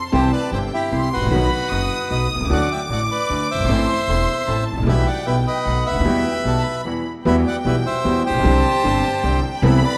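A lush, vibrato-rich bowed violin section sings a high second line from 0.0 s as a dark, airy bandoneon carries the up-front melody, backed by a clear but boxy grand piano, a woody pizzicato upright bass and a very quiet, reedy second bandoneon adding stabs, in a passionate, sultry rubato tango excerpt in 3/4 that pauses for a brief break at 6.9 s before a new section begins at 7.3 s, the ensemble set in a moderate scoring-stage reverb.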